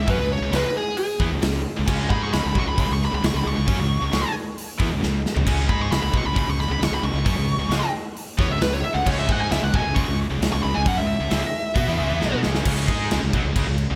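Heavy and menacing, this hard rock excerpt at 134 BPM in C# minor opens with a dark, bluesy lead guitar soloing up front through distortion and analog delay until 12.4 seconds. Beneath it, three bright guitars churn out the riff: a double-tracked high-gain part and a scooped high-gain part sit in the background, while a cranked stack guitar is barely audible. A round, punchy fuzz bass and a huge arena drum kit with a boomy kick and bright cymbals drive the piece, with drum fills at 5.0 and 12.2 seconds before the harmony shifts to a C#5 chord at 12.7 seconds.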